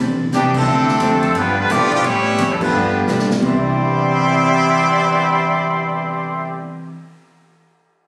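Swinging at 174 BPM in 4/4, this brassy, energetic big band excerpt in C major opens with dark, clean hollow-body jazz guitar and woody pizzicato upright bass, joined at 0.3 seconds by an up-front trumpet section carrying the melody with light vibrato, a nasal straight-muted trombone section on the second line, and a drum kit with a punchy kick and ride cymbal. A background baby grand piano enters at 0.7 seconds, and drum fills and band accents punctuate the passage as the harmony moves from Cmaj9 through Dm7, G7 and A9 back to Cmaj9. The sound carries a moderate hall reverb, with the quality of a phone recording made in the room and a club-like reverb.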